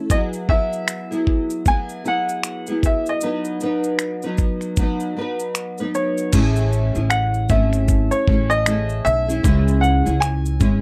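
A dry, close recording in a 1970s studio style frames this heartfelt, easy-going acoustic pop excerpt at 77 BPM in 4/4, with a swung 16th-note feel and tuning set to A4 = 435 Hz. A fingerpicked, double-tracked nylon-string guitar accompanies a short-sustained upright piano melody. Beneath them, a gritty, compressed, sampler-style soul drum kit plays thumpy kick, finger snaps, shaker and crash cymbal as the chords move from Eadd9 to B. At 6.3 seconds a woody pizzicato upright bass joins, and the harmony shifts to Amaj7 and then C#m.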